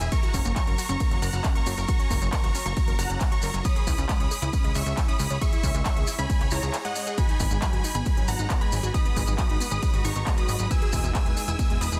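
Uplifting trance at 136 BPM in G# minor, bittersweet and driving, with an overdriven, up-front electronic kick, a techno kit of handclaps, smooth hats and ride, grainy background maracas, a punchy, funky plucky analog bass, huge detuned supersaw chords carrying the melody with sidechain pumping and digital delay, two unison plucks playing bright arpeggios and a very quiet second line, and a shimmering, ethereal ambient pad entering at 8.3 s after a brief break at 6.7 s, all in a dense, heavily limited modern master.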